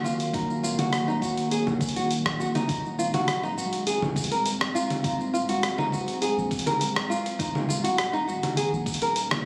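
Meditative and earthy, this short organic downtempo excerpt moves at 102 BPM in a straight 4/4, set in Eb dorian with a tuning of A4 = 438 Hz. A warbling, nostalgic pad built from detuned sawtooth and triangle tones holds slow-attack chords with a long release, colored by chorus, its own reverb and sidechain pumping, as the harmony shifts from Ebm7 to Ab7/Eb at 2.7 seconds and returns to Ebm7 at 7.4 seconds. Up front, a dark, small-sounding nylon-string guitar plays fingerpicked arpeggios through a digital delay. A gritty, compressed sampler-style kit of congas, hi-hat, rim click and shaker sits forward in the mix, joined by a thumpy electronic kick, both re-recorded in a large room. Underneath, a round sine sub bass with a fast attack sustains low notes in the background, pumping with the sidechain. The whole piece is bathed in a lush 2.6-second hall reverb and captured on a phone in the room, giving it an ambient studio character.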